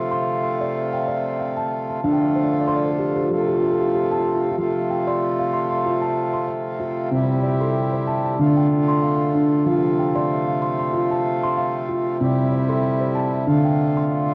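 Dreamy and gentle, this meditative world piece for tuned percussion moves at 94 BPM in 4/4 with a light swing on the sixteenths, settled in F major. A steel tongue drum, struck with rubber mallets, plays arpeggios spanning C3 to C6; its tone is round, pure, full and ringing, close-miked, dry and up front. Beneath it a pedal harmonium holds sustained chords, reedy and breathing with a mellow character, also sitting up front. The drum takes a fill from 2.0 to 4.6 seconds before the music opens into its longer second passage, while the harmony drifts between F, D minor and C. Both instruments carry the soft patina of cassette tape, and a short, wet studio reverb gives the home recording a gentle sense of space in this excerpt cut from a longer piece.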